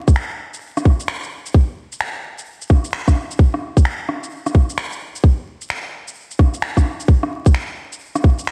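The rhythm is a swung 4/4 groove at 130 BPM, its sixteenth notes pushed to a 64% lilt that gives this future garage fragment its loping, off-kilter gait. A tight electronic kick drum sits up front and carries the pulse from 0.1 to 8.4 seconds, its tape-softened punch carrying the ring of a large room. Behind it, a lighter layer of electronic shaker, finger snaps and rim click runs through to 8.5 seconds, set further back and colored by the same warm tape tone and roomy re-recording. A light reverb and a bed of vinyl crackle wrap the drums in a dusty, late-night haze that leans nocturnal and wistful. Cut from a longer piece, the clip stays on a single section for its full length, letting the sparse percussion and surface noise set the mood on their own.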